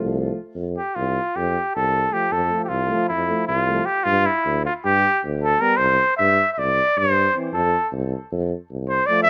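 Balkan brass band folk music in 9/8 at 310 BPM counted in eighths, this festive, exuberant excerpt in F major runs about nine seconds and is cut from a longer piece. A cornet with a straight mute carries the melody up front, its nasal, clear tone softened by a gentle attack and a smooth top, and its solo begins at 0.6 seconds. Beneath it a present tuba holds the bass, also up front, while a euphonium with light vibrato and a distant, roomy trombone supply accompaniment further back in the mix. All four parts play in a classical style, with the euphonium, trombone and tuba sharing a mellow warmth. The harmony moves from F to G5 at 4.1 seconds, then to C and back to F, and light studio reverb frames the rough home-demo sound.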